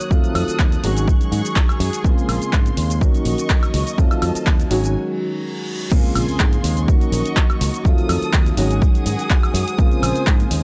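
An overdriven, punchy electronic kick sits up front in this groovy, funky filtered disco house excerpt in Bb minor at 124 BPM, with a growly fingered electric bass, an overdriven analog drum machine of hi-hat, handclaps, shaker, woodblock and crash, and a dark, boxy concert grand piano, phased and low-pass filtered, cycling through chords like Bbm9, Ebm7 and F7b9. A distant, woody violin section holds soft-attack bowed chords with vibrato, while the piano, strings and bass pump with sidechain compression. A filter sweep runs through the opening section and into a break at 4.9 seconds, where a reverse cymbal rises into the drop and impact at 5.9 seconds, all captured in a dry, gritty hardware sound.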